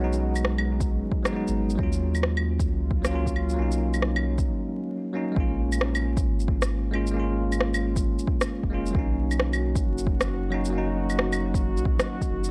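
A swung 16th-note groove of overdriven electronic shaker, claves and rim click, joined at 0.8 seconds by a deep, overdriven electronic kick, drives this ghostly, wistful future garage excerpt, where a bell-like tine electric piano with 12-bit sampler grit, sidechain pumping and analog delay sits up front over a round, soft dub sub bass, while a warbling, detuned tape-like pad with chorus drifts in the background, dropping out at 4.5 seconds and returning at 8.9 seconds, all wrapped in a dry, gritty hardware sound with vinyl crackle.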